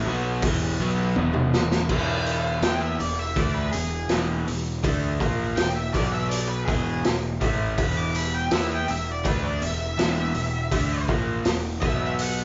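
A straight 4/4 groove at 82 BPM drives this gritty, raunchy slice of blues rock power trio and southern rock, cut from a longer piece and tuned slightly flat at A4 = 436 Hz. A crunchy, double-tracked overdriven guitar riff sits up front from the start, bright and picked, while a growly fuzz bass, overdriven and played with a pick, underpins it in the low register. The raw garage drum kit enters at 0.4 seconds, saturated and mid-forward with a boomy kick, a medium-tuned snare, hi-hat, crash and toms, and it plays a fill between 1.2 and 1.9 seconds. At 2.6 seconds a dark, distorted octave-fuzz lead guitar takes the melody, reaching as high as D6. The harmony moves between E5 and B5 power chords, and the whole trio sounds like a band playing live in one room with light reverb and a rolled-off, dusky top end.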